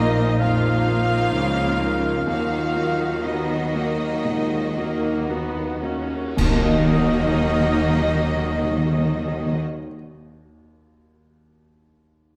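Hard-mallet timpani strike with articulate calf-head attack from 2.3 s, alongside bright, close clash cymbals, a cymbal swell and concert bass drum in this bittersweet, moving cinematic orchestral cue, which is cut from a longer piece. It unfolds slowly and freely in rubato, easing down through its opening section before an ensemble accent arrives at the start of the second. A soft, expressive violin section carries the melody in the background, while a smooth, even second violin section, a pure silver flute, a roomy solo oboe and a very quiet clarinet weave second lines around it. Beneath them, a rich viola section and a felt-muted upright piano provide an intimate accompaniment, a distant French horn section holds mellow sustained chords, and a fingerpicked concert harp sets ringing arpeggios. Even, bowed cello and double bass sections anchor the bass beneath a moderate scoring-stage reverb. 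Most of the orchestra falls away at 9.6 s, leaving the harp briefly and then the piano alone until 12.4 s.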